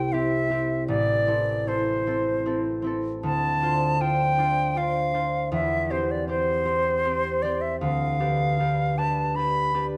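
In a 3/4 at 78 BPM, taken with free rubato, this tender, warm romantic classical duo in C major unfolds as a brief passage cut from a longer piece. A silver concert flute carries the melody between C5 and B5 with a pure tone, soft attacks and vibrato, while a fingerpicked concert harp supplies ringing accompaniment from A1 up to G5, both placed up front. Close, detailed microphones capture the pair in a moderate recital hall reverb as the harmony moves from C through Am, Dm7 and C/E to G7/D.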